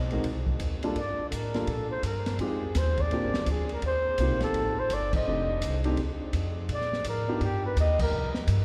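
A cavernous cathedral reverb wraps this short, playful cut of small-group swing and bop in Bb major, moving at a brisk 168 BPM with a lilting swing. A breathy, whispered flugelhorn carries the melody with light vibrato, over woody, thumpy pizzicato upright bass, an intimate grand piano whose action noise can be heard under its long sustain, and a dark, smooth drum kit with a high-tuned snare and boomy kick. The band hits accents together at 5.1 and 7.9 seconds as the chords wander through rich minor and dominant colours.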